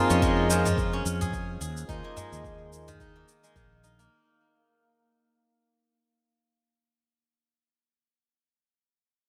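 Organic downtempo in a meditative, hypnotic mood, this brief fading fragment pairs a ringing, silvery fingerpicked steel-string zither up front with a reedy, breathing pedal harmonium under sidechain pumping, low-pass filtering and digital delay, while a round, dark fretless bass with tube saturation, a deep electronic kick, a tape-toned cabasa and a small udu in the background move over Db/F to Ebsus4, all bathed in a lush hall reverb and bright 1980s-style digital sheen.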